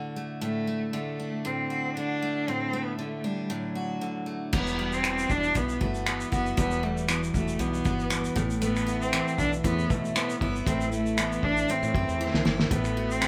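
A picked steel-string acoustic guitar opens this wistful, reflective acoustic pop excerpt in E minor at 117 BPM with a light sixteenth-note swing, joined at 0.4 seconds by a rich, smooth bowed cello carrying the melody up front with vibrato, while finger squeak catches on the guitar strings. At 4.5 seconds a background fingerpicked acoustic guitar adds arpeggios, a woody, round fretless bass settles underneath, and a cloth-damped, thuddy drum kit comes in with muffled dark cymbals, a fat snare, finger snaps and shaker, its gritty lo-fi character sitting up front. The band sounds like it is playing live in one room with light reverb, and a drum fill at 12.2 seconds leads into the closing D chord.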